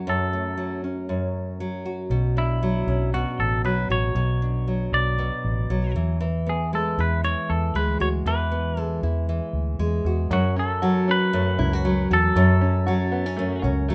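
Light reverb surrounds this reflective, tender pop excerpt with a gentle swing, where an up-front, full-bodied nylon-string guitar, fingerpicked with audible finger squeak, carries the accompaniment, a clean, compressed, scooped electric guitar sings the melody, a dark, round, foam-muted electric bass enters at 2.1 seconds, and a twangy, plunky open-back banjo adds arpeggios from 10.3 seconds.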